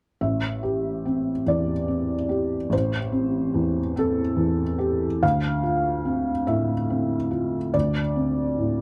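In a rubato 6/8 at 48 dotted-quarter beats per minute, this brief classical fragment of a longer piece carries a longing, fragile mood as a felt-muted upright piano plays accompaniment from 0.2 to 8.8 seconds, spanning A1 to F5 over Am7 and then Dm7 at 5.2 seconds, its soft, boxy, intimate tone sitting up front with audible action noise, set in a dark production with moderate studio ambience.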